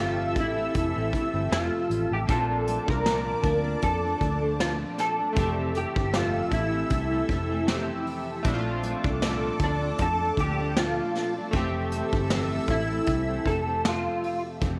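A hazy, laid-back indie and bedroom pop excerpt at 78 BPM in F major opens with a slightly broken-up electric guitar carrying the picked melody up front, bathed in ensemble chorus and slapback echo, over a dark, fingerpicked nylon-string guitar with lush chorus and vibrato, glossy chorused retro synth keys with tremolo, a thick detuned unison pad with chorus and phaser, and a round, foam-muted fingered electric bass. A soft brush drum kit with a punchy kick enters at 0.4 s, sitting roomy yet prominent, as the harmony drifts gently between Fmaj7 and Bbmaj7. A moderate echo-chamber reverb wraps the whole mix in a dreamy, vintage glow.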